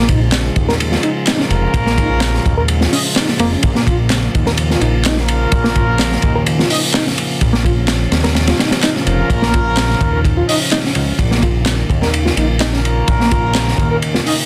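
A crunchy breakbeat kit sits up front in this swaggering, raw breakbeat excerpt, its tight kick, high-tuned snare and dark cymbals saturated and gritty, with a rolled-off top and the sound of a small room. Layered electronic handclaps join at 0.3 seconds, re-recorded to share that same space. Beneath them a fat analog bass, thick and detuned with a sawtooth, wave-folded edge, holds the low end from the start. An electric piano plays a clean riff through fast tremolo, a low-pass filter and delay, with a filter sweep running its whole length. A bright tonewheel organ sits in the background with sustained chords, lightly overdriven with key click, a slow rotary speaker and sidechain pumping. From 1.4 seconds a warm, classical-style brass section adds stabs with delay, and the mix carries light reverb and a dense, heavily limited modern master.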